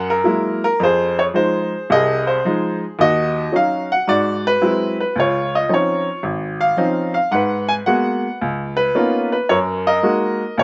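A woody, polished upright piano sits up front in this late-night, moody solo jazz fragment, playing alone with a swung eighth-note feel in 4/4 across a span from Ab1 to Ab5. Its single section moves through rich harmonies such as Gb9, Ebm7, Ab7alt, Dbmaj9 and Db13 before settling on Gb69 near 9.5 seconds. The outdoor recording carries light reverb and a rolled-off top end, and the passage is cut from a longer piece.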